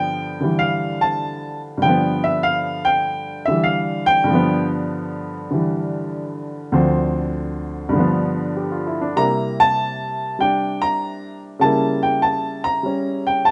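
Swung eighth notes in an easy 4/4 set a relaxed, buoyant lilt for this solo jazz piece, cut from a longer performance. A single upright piano carries everything alone across the full 13.5 seconds, its woody, close-up tone ranging from deep bass notes up into the bright upper register. The harmony rests on a G7 before moving through Dm7, back to G7, then to C7 and a C#dim7 that closes the passage. The piano sits up front in a moderate stone-room reverb that adds a gentle, hard-edged ambience, and the overall sound is soft at the top, with a live, in-the-room feel. The mood is warm and swinging, suggesting an unhurried performance.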